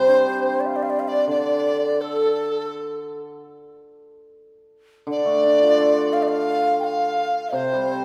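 Tender and graceful, this 8-second excerpt of Chinese traditional chamber music moves at an unhurried 86 BPM in the D yu mode, with a breathy, vibrato-laden xiao carrying the melody, a mellow, hollow large dizi with a buzzing membrane tracing a second line, and an up-front hammered dulcimer ringing and shimmering below, the ensemble heard from further back in a lush scoring-stage reverb.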